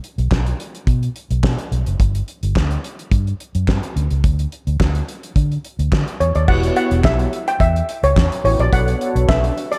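A damped drum kit with a fat snare, tight kick, handclaps and dark cymbals opens this early-eighties boogie funk excerpt at 107 BPM in E dorian, joined almost at once by a round, foam-muted fingered bass sitting up front for a danceable, late-night groove. At 6.2 seconds a shimmering steel pan lead enters through analog delay, and mellow, detuned synth brass with chorus and vibrato follows at 6.5 seconds over Em69 and Bm9 chords. The dreamy mix is soaked in a lush hall reverb with a touch of studio ambience.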